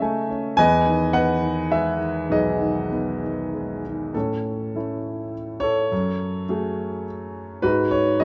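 Classical, lyrical solo piano in 3/4 at 96-108 BPM, played with rubato and tuned to A4 = 443 Hz, this brief cut from a longer piece has a cool, bittersweet mood. A dark grand piano carries everything alone from 0.0 to 8.2 seconds, opening with a short fill and moving from A6/C# and Emaj7 into a new passage at 4.1 seconds that passes through A, F#madd9 and G#m7. Close, detailed microphones place the boxy, intimate instrument up front with audible action noise and long sustain, set in light reverb.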